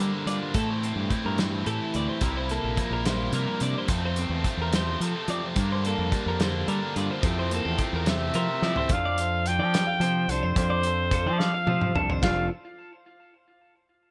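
Math rock and midwest emo in a lilting 6/8, playful and intricate, this short section cut from a longer piece moves through jazzy extended chords before settling on a sweet F major sixth color. A bright, twangy clean electric guitar with spring reverb carries the accompaniment, while a compressed twelve-string electric guitar spins chiming arpeggios through tape echo above it. A biting, double-tracked overdriven guitar drives a riff through the first 8.9 seconds, underpinned by a growling fingered bass with its own overdrive. A loose indie drum kit in a small room sits up front with dark cymbals, a tight kick and a medium-tuned snare, marking the change of section with fills around 8.6 seconds and again near the close. At 8.1 seconds a breathy, intimate trumpet enters with a soft-attack, vibrato-laden melody, its vintage, whispered tone floating over the dry, close-sounding band.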